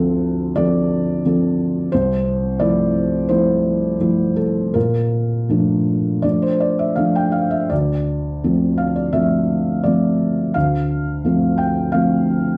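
A dry, close 1970s-style studio sound with light reverb frames this intimate, wistful 12.6-second fragment of neoclassical minimalist piano in D minor, where a solo felt-muted upright piano, dark and mellow with thick felt and placed up front with a slapback echo, drifts in rubato around 83 BPM in 4/4 across a range from C2 to G5 through Dm7, Fmaj7/C and Bbmaj7 before settling back on Dm7 at 7.7 seconds.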